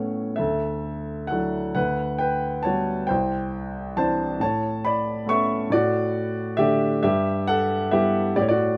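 Classical solo piano, reflective and dark, in a lyrical, rubato 6/8 as a warm, up-front grand piano moves through Dadd9, Gmaj7/D, Cadd9, Aadd9, D/A and G6 across a range spanning C2 to C#6, captured by close, detailed microphones in a nearly dry room for this 8.8-second cut from a longer piece.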